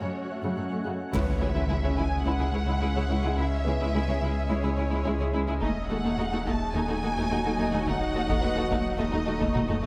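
Brooding and tense, this cinematic cue blends orchestra and electronics at 107 BPM in C# minor, heard as a short cut from a longer piece. A lush violin section carries the expressive melody with soft-attacked, vibrato-rich bowing, while violas and a rich, close cello section sit in the background beneath a shimmering, ethereal pad whose granular, octave-up glow carries chorus and built-in reverb. A very quiet, clear concert grand piano adds texture from the start. At 1.1 seconds a second violin line, a deep, full sub bass with octave and a hard-sticked taiko ensemble arrive alongside an electronic impact in the background, as the harmony moves from F#m to C#m. The taiko drops out and returns at 5.6 seconds over a D#dim chord, ending with a drum fill at 9.5 seconds, all set in a moderate scoring-stage reverb.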